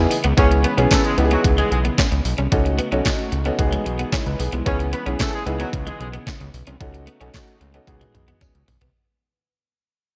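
A boxy, intimate grand piano with tube saturation and slapback echo, a smooth, very quiet sawtooth pad and a fat, detuned analog bass with a filter sweep open this slick, late-night early-eighties boogie funk excerpt together at 112 BPM, while a clean, compressed electric guitar riff with lush chorus and an up-front, sampler-style 8-bit drum machine with a thumpy kick, handclaps and toms fill out the groove, a tight vintage horn section in octave doubling carries a second line from 0.4 to 6.1 seconds, a jingly, distant tambourine sits in the background, and the music fades out over Amaj9/C#, C#m7, B7 and Emaj7 in a big arena-like hall, closing with a drum fill at 7.9 seconds.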